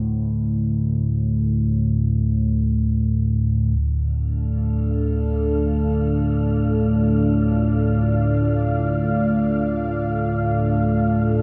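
Unsettling and ominous, this dark ambient drone fragment opens with a mellow, detuned analog drone, sawtooth and pulse-wave tones under a filter sweep and chorus, before a deep, full-bodied analog pad of sustained minor chords enters up front at 4.3 seconds and an airy, breathy, wind-like tuned noise texture fades in softly at 4.9 seconds, all of it bathed in a cavernous cathedral reverb.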